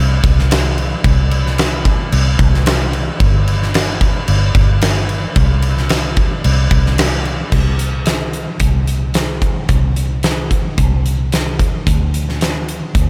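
Rock with a shoegaze and dream pop haze, this short excerpt moves at 111 BPM in a straight 4/4, its mood hazy and wistful. A vintage muted electric bass, played with the fingers, carries the low end from the first moment, its tone dark, round and foam-muted through an amp, sitting between G1 and D2. At 0.2 seconds a huge arena drum kit joins, acoustic and up front in a big room, with a punchy kick, a fat snare, hi-hat and bright crash cymbals. The two parts sit at an even level under a light reverb, with the tuning set to A4 = 441 Hz. The passage shifts into a new section at 7.5 seconds, and both parts carry on until the clip ends at 13.1 seconds, cut from a longer piece.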